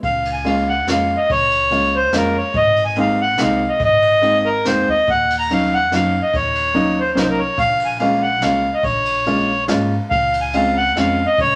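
A reedy, clear single-reed accordion carries the melody up front in this whirling, nostalgic musette waltz at 143 BPM in 3/4 and Db major, over a growly pizzicato upright bass and a brushed jazz kit with dark cymbals and a boomy kick in a small room, while a woody upright piano with short sustain enters as accompaniment at 0.4 seconds, the chords moving from Db6 through Ebm7 to Dbmaj7 in a wet studio reverb, in a passage cut from a longer piece.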